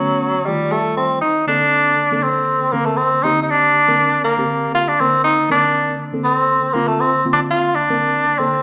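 A clear, up-front tenor saxophone with soft attack, vibrato and scooped notes soars over a mellow, reedy electric piano shimmering with fast tremolo, both touched by slapback echo, in this funky, swinging jazz excerpt in Bb major at 120 BPM, heard live through a club PA with moderate room reverb as the harmony moves from F9 at 0.5 seconds to Bbmaj9 at 1.5 seconds.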